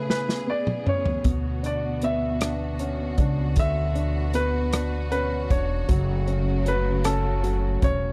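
A natural country drum kit sits up front in this short cut from a longer six-eight pop ballad, opening with a fill at 0.1 seconds, its punchy kick, medium-tuned snare, toms, rim click and hi-hat carrying an airy, polished studio-room sound. The mood is swaying and romantic, moving at a slow 52 beats per minute in 6/8. A bright, brilliant concert grand piano carries the melody in a high register, its short sustain trailed by tape echo, while a warm baby grand supplies accompaniment beneath it. A lush, bowed string section holds sustained chords with clear, focused vibrato, and from 1.2 seconds a pizzicato upright bass with steel strings adds a woody, growly low end close to the listener. The harmony moves from Aadd9/C# to Bmadd9 before settling on F#m, all captured as a dry, close 1970s-style studio recording with little reverb.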